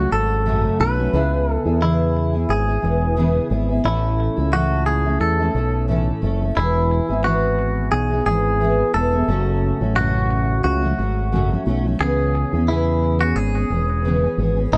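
Easy-going and heartfelt, this short acoustic pop excerpt sways with a light swing, its fingerpicked steel-string acoustic guitar, double-tracked, laying down a dark, full-bodied accompaniment with audible finger squeak while a fingered electric bass with an envelope filter sits punchy and up front underneath. A bright, twangy, clean electric guitar, recorded direct and dressed in lush chorus and delay, carries the melody over a progression that moves from F#m through C#m7, A and E. The sound is dry and close, with all three parts playing together for the full 14.8 seconds.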